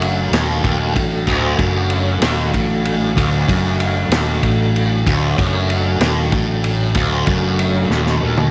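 Mysterious and trippy, this short psychedelic rock excerpt moves at 63 BPM in a straight 6/8, sitting on a D chord in D major with a light reverb around it. A double-tracked, fuzz-distorted guitar riff with phaser sits up front in the low register, backed by a round, amped fingered electric bass and a vintage acoustic kit with dark cymbals, a tight kick and a rolled-off top. A piping, scooped tonewheel organ holds sustained chords through a slow rotary speaker and chorus vibrato, and the drums close with a fill at 7.9 seconds.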